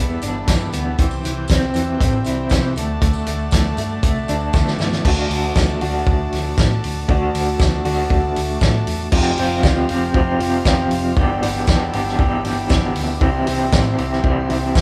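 A straight 4/4 groove drives this jangly, upbeat indie rock excerpt, led by a loose, saturated drum kit with a fat snare, punchy kick and dark cymbals, and a short fill at 4.5 seconds. Up front, an electric guitar through a small old amp plays a slightly broken-up tremolo riff. A round hollow-body bass sits beneath it, with a buzzy vintage combo organ holding chords in the background and a very quiet tambourine jingling along. The band plays in a moderate recital-hall reverb, and the harmony shifts to a new Fsus2 passage at 9.1 seconds.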